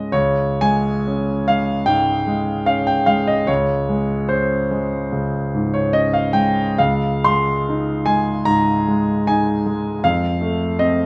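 A warm concert grand piano sits up front in this serene, luminous fragment of impressionist classical music, its deep bass and long sustain ringing openly through a moderate recital hall reverb. Playing alone in Db lydian at a rubato 73 BPM with uneven beats, it ranges from Db2 to C6, settling on a Dbsus2 chord at 6.8 seconds before an F7 arrives at 10.0 seconds. The brief passage is cut from a longer piece.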